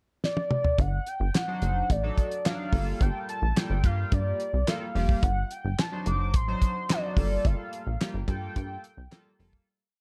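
Early-eighties boogie funk in G minor at 108 BPM, slick and funky, opening with a drum fill on a damped 70s kit with a fat snare layered with handclaps and a tight kick, alongside a velvety, detuned synth lead with vibrato and slapback echo carrying a motif-based melody. A plucky, wave-folded analog bass joins at 0.8 seconds, playing a syncopated line with slides, and a glossy chorused polysynth follows at 1.5 seconds, comping syncopated chord stabs over D7b9 and Gm9 changes in a small, dark room before the piece fades out from 7.4 seconds.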